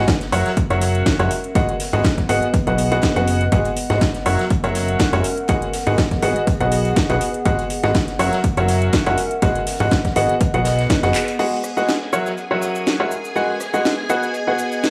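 Piano house with a soulful, bittersweet mood and a light swing, cut from a longer piece: a clear, woody upright piano riff with dub echo and sidechain pumping leads over a plucky, wave-folded analog bass, a punchy overdriven electronic kick, a house kit of cracking snare, metallic hats, handclaps, cabasa, rim click and crash, a very quiet acoustic big-band kit, and a warbling, nostalgic tape-like pad in the background, until a drum fill and band accent at 11.1 s drop the bass and kick and let shimmering string-machine violins enter at 11.4 s.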